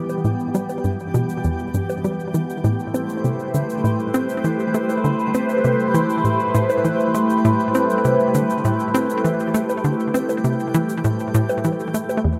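A cosmic, hypnotic stretch of ambient, sequencer-driven space music at 100 BPM in 4/4, moving from E minor to A minor and cut from a longer piece. A swirling, nasal phased analog pad holds sustained chords up front with phaser and chorus, beside a hollow, bouncy square pluck riff that carries chorus and delay. A twinkling granular texture with octave-up shimmer and tape-warm bongos and cabasa with delay both fade in across the 12.2 seconds, all set in a wet plate reverb.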